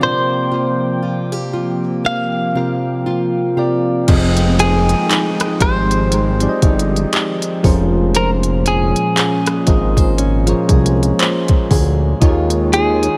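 Longing and late-night in mood, this contemporary R&B piece moves at a slow 59 BPM in 4/4 with a gentle swing on the sixteenths and settles into F minor. It opens with a break in which a bright, clean electric guitar recorded direct carries the melody up front. Beneath it, soft, round electric-piano-like synth keys with chorus play the accompaniment, a hollow, flute-like pad holds sustained chords in the background with chorus and sidechain pumping, and a fingerpicked plugged-in steel-string acoustic guitar plays arpeggios further back. At 4.1 seconds, a fat, detuned analog bass with a filter sweep and a smooth, tape-warm electronic R&B kit arrive together, the kit bringing a soft kick, hi-hat, rim click, handclaps and crash cymbal, while a faint downlifter drifts in the background. The harmony moves through lush chords such as Fm9 and Bbm9/F before resting on Eb9sus4, all set in a light reverb in this excerpt from a longer piece.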